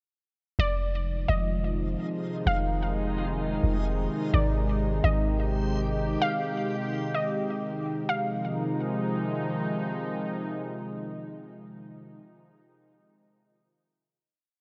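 A warbling, lo-fi pluck repeats a sparse looping melody with chorus and delay over an evolving, detuned sawtooth pad, a deep, boomy 808-style bass and a reversed, granular texture drifting dreamily in the background, in this hazy, melancholic half-time hip hop piece at 128 BPM in F dorian, where the bass and texture stop at 6.2 seconds, the harmony settles on a final Fm7 chord at 8.1 seconds, and the pad sustains until 12.2 seconds.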